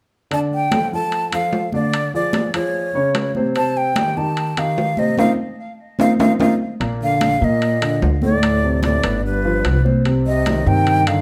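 A breathy metal flute with vibrato and lifted highs carries the melody up front, its soft attack and slightly unsteady tone trailing a tape echo through this lively, sophisticated Afro-Cuban jazz excerpt in Bb major at 148 BPM. An intimate grand piano, natural enough that its action noise can be heard, accompanies from 0.3 seconds, alongside high-tuned congas played with soft hands in a distant, large-room sound and close, dry timbales with a ringing metal shell. The band hits an accent from 5.2 to 6.8 seconds, capped by a drum fill, and the harmony moves from Dmadd11 through Ddim, Db and Cm to F5. At 6.8 seconds a woody, growly pizzicato upright bass with steel strings arrives up front as the chords turn to Bb. Just after, at 7.0 seconds, a mellow, whispered trombone adds a second line in its low register. The whole group sits in a moderate studio reverb through to the end at 11.2 seconds.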